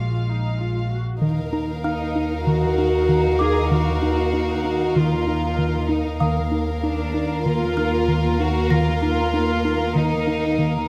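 Cinematic suspense score at 96 BPM in Eb harmonic minor, uneasy and tense, where up-front cellos and double basses bowed sul tasto hold a soft-edged low floor beneath a lush, dark viola section and a faint, floating violin melody, while a delicate, tinkling music box glints in the background and, from 1.2 seconds, a second violin line and a rubbery, hollow, nasal square-wave bass riff join, all caught close in a light reverb.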